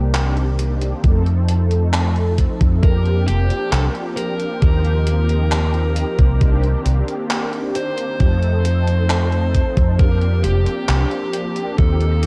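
A dry, cassette-tape sound frames this faded, dreamy vaporwave excerpt at 67 BPM in 4/4, where a round, up-front fretless electric bass and brassy, detuned synth brass with chorus, vibrato, filter sweep and tape echo drift through Cm9, F7, Bb69/F and Eb69, an overdriven, thumpy electronic kick arrives at 1.0 seconds beside the gated handclaps and hi-hat of a sampler-style 80s drum machine, and a dark, overdriven, picked lead guitar with tape echo carries the melody from 2.8 seconds.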